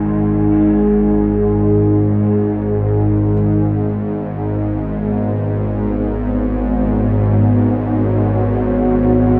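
Dark ambient drone in free time, desolate and ominous, cut from a longer piece and soaked in a huge, dreamy reverb with a cassette-tape cast. A tense, string-like bowed drone sits up front in the low register with vibrato, beneath a deep, moody pad of detuned sustained chords thickened by chorus. A clear, boxy grand piano plays arpeggios in the background through a diffuse delay until 3.9 seconds, while the drone and pad hold through to the end.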